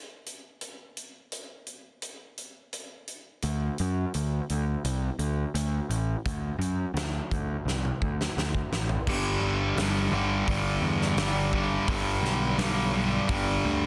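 Quiet-loud alternative rock at 85 BPM in G major, cathartic and restless, cut from a longer piece, where a huge arena drum kit with a fat snare and punchy kick opens, an overdriven, round picked fuzz bass enters up front at 3.4 seconds, and after a drum fill a bright, double-tracked fuzz guitar riff crashes in at 9.1 seconds on a G chord, all under light studio reverb and a dense, heavily limited modern master.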